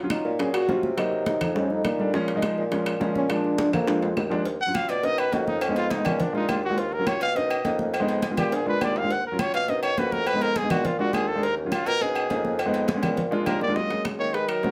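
Afro-Cuban jazz at a driving 207 BPM in Eb minor, this sophisticated passage is cut from a longer piece and opens with a breathy trombone solo, its scooped notes and vibrato sitting present alongside a warm, up-front grand piano comping through chords such as Ebm9, Cm7b5 and F7. A mellow bassoon carries the bass line from a distance with light vibrato and a roomy, classical touch, while a dense percussion bed keeps the groove moving: bright, high-tuned congas struck with hard hands, tight and very quiet bongos with cowbell, ringing metal-shelled timbales and agogo bells with a compressed, saturated edge, and woody claves in the background. At 4.6 seconds a trumpet takes over the melody with a jazz-style solo, up front with light vibrato, over a repeating Ebm7, Bmaj7, Fm7b5, Bb7 cycle. Drum fills punctuate the phrases, and the trombone returns at 13.5 seconds as the harmony settles onto Ebm11. 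A moderate studio ambience gives the ensemble a compact, lively space.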